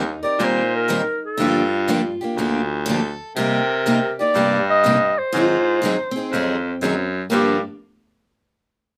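A swung 4/4 pulse at 122 BPM drives this short cut from a longer acoustic string-swing piece in the jazz manouche style, set in G minor with a virtuosic yet bittersweet mood. Two picked steel-string guitars carry the accompaniment: one bright with a concert-body ring, the other a boxy parlour instrument sitting in the background, where a finger squeak slips through. A third parlour guitar with fresh strings plays a second line beneath the tune. A punchy baritone saxophone handles the bass up front, its subtone and vibrato giving the low end a vintage jazz character. From 0.2 s a breathy clarinet with a soft attack and vibrato takes the melody, moving over chords of Eb6, Gm7, Cm7 and Ab7 before returning to Gm7 at 7.3 s, where a new section begins. Close, detailed microphones and a moderate studio reverb keep the small ensemble intimate and present.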